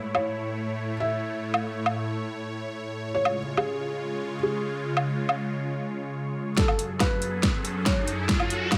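A half-time 4/4 groove at 140 BPM drives this aggressive, chaotic heavy wobble dubstep piece in F# minor: an up-front electronic drum kit with a huge snare, metallic hi-hats and woodblock sits alongside a lush, detuned supersaw pad that pumps with sidechain and phaser through A and C# chords, while a soft, felt-muted upright piano, mellow and intimate with audible action noise, carries a melody through a low-pass filter and digital delay; at 6.6 seconds a punchy, tape-warm electronic kick joins a build-up with a drum fill and filter sweeps, including one on the piano, as the harmony moves to F#madd9, and an electronic riser enters at 7.3 seconds, all set in light reverb and digital ambience.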